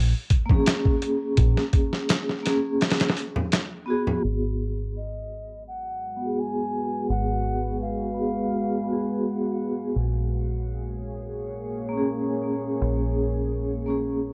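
Worn, warbling cassette tape and small-room ambience frame this dark, cinematic trip hop excerpt at 84 BPM in G# dorian, where a round, punchy fingered electric bass, gritty pitched-down boom bap drums and ringing hard-hand congas with egg shaker open over A#m7, a metallic vibraphone carrying tremolo, 12-bit sampler grit and tape echo gets a filter sweep from 4.2 seconds, a distant, pure silver flute with dub echo sings from 5.0 seconds, and a moody, detuned sawtooth pad with chorus and reverb settles in at 6.1 seconds.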